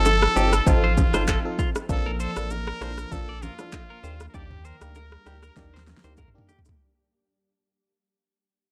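A bright, punchy trumpet carries the melody over a sunny, joyful afrobeats groove at 98 BPM with a light sixteenth-note swing, backed by a biting, phaser-treated FM electric piano, a twangy clean guitar riff, a round analog bass, an ethereal pad washed in chorus and reverb, a deep house drum kit with a fat snare and handclaps, and background bongos and congas, all moving through F7, Bbmaj7 and Ebmaj7 in a dry, gritty recording that fades throughout, with a drum fill arriving at 5.6 seconds.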